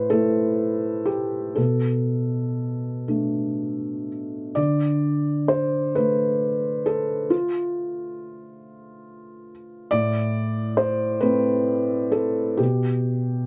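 A felt-muted upright piano plays alone from the first moment, its tone soft and dark with the thick felt sitting up front in the sound. This short, reflective fragment of neoclassical minimalist piano is cut from a longer piece and moves in a slow, rubato 6/8, with the dotted-quarter pulse drifting between 39 and 47 BPM. Set in D dorian, the harmony moves from Am to Bm7, then settles on Dm at 4.6 seconds as the opening idea returns, before passing through Am and closing on G/B. The piano stays between A2 and D5, giving a mellow, melancholic colour. Close, detailed microphones and very little reverb keep the instrument intimate and natural, as if heard from the bench.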